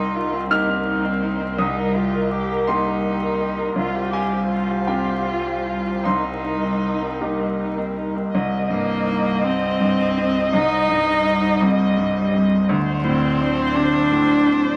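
Under a vinyl crackle and a moderate club reverb, this fragile, reflective neoclassical excerpt in a rubato 6/8 pairs an up-front, brilliant grand piano with long sustain and a rich, close bowed cello carrying the second line, while a vibrato-laden viola with portamento, an airy breathy pad with chorus, and a focused bowed double bass fill out the harmony as it shifts toward a D7 at 12.7 seconds.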